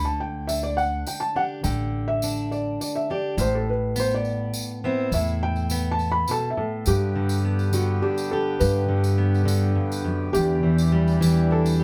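Warm and hopeful, this acoustic folk fragment in 3/4 sets a mellow, boxy felt-muted upright piano with audible action noise on the melody over an up-front, full-bodied fingerpicked jumbo guitar, a woody, thumpy pizzicato upright bass on gut strings and a jingly tambourine, while a reedy, nasal hand-pumped harmonium adds sustained chords from 6.9 s, the band playing live together in one room with light reverb.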